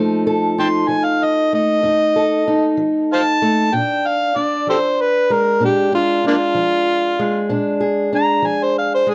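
Acoustic country blues in a straight 12/8 feel, this short piece cut from a longer performance carries a gritty, laid-back mood. A fingerpicked steel-string parlour guitar opens at 0.0 seconds with a dark, boxy tone, sitting up front as the accompaniment. At 0.6 seconds an amplified, overdriven harmonica takes the melody, soloing in a jazz style with tongue slaps, scooped notes and a light vibrato, its sound thickened by a slapback echo. The harmony moves from F7 to Bb7 at 3.7 seconds. The dry, close sound recalls a 1970s studio, with a small room's ambience around both players.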